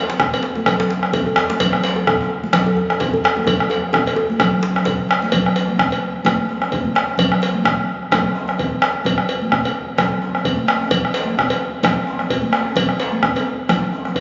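Earthy and powerful, this West African traditional drum ensemble excerpt moves at 129 BPM in 4/4 with lightly swung sixteenths, anchored by a round, vintage-sounding bombo placed up front. Around it sit thick-skinned, high-tuned congas, a metallic cowbell, a deep, distant djembe with buzzing metal rattles, and a second tight, cracking djembe that sounds close and dry until it stops at 5.0 s, just as a drum fill running from 3.5 s gives way to a new section at 5.3 s. Captured on a phone in a wet concert hall with compression and a dull, muffled top end, the performance feels roomy and raw.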